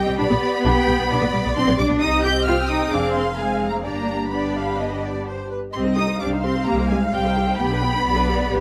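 In a straight 4/4 at 130 BPM, this urgent, stormy classical-period movement for string orchestra, cut from a longer piece, sets a focused violin section high on the melody above a second violin section carrying a soft-attacked, expressive second line, a lush viola section filling the accompaniment, cellos with portamento on the bass, and an up-front, smooth double bass section that enters at 0.1 seconds, in light reverb over chords moving from G/B through Cm and Fm to G.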